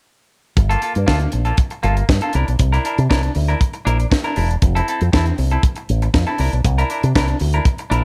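Disco groove at 118 BPM in G dorian, driving and sultry, cut from a longer piece, with an up-front fingered electric bass through an envelope filter, a tight funk drum kit with a high-tuned snare, tight kick and gated reverb, and a bright, clean, compressed semi-hollow electric guitar picking accompaniment, all entering at 0.6 seconds over Gm9, C9 and Fmaj7 chords in a small room ambience.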